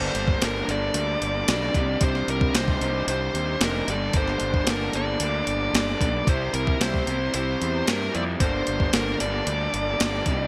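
Indie rock with a bittersweet, cool mood, this short excerpt moves at a steady, straight pace over chords that shift between Gmadd9, Cmadd9 and C. A bluesy lead guitar sits up front with a dark, distorted tone, carrying the melody through digital delay. Behind it, two picked rhythm guitars play riffs in the background: one runs through a small old amp and sounds slightly broken-up, compressed and lo-fi, while the other is a raw garage guitar, overdriven with a subtle chorus and its own digital delay. A fingered electric bass adds a round, fuzzy low end. The most prominent part is a clean 12-bit drum machine, sampler-style, with a thumpy kick, medium-tuned snare and hi-hat treated with gated reverb, giving the light-reverb mix its bright 1980s-style digital character.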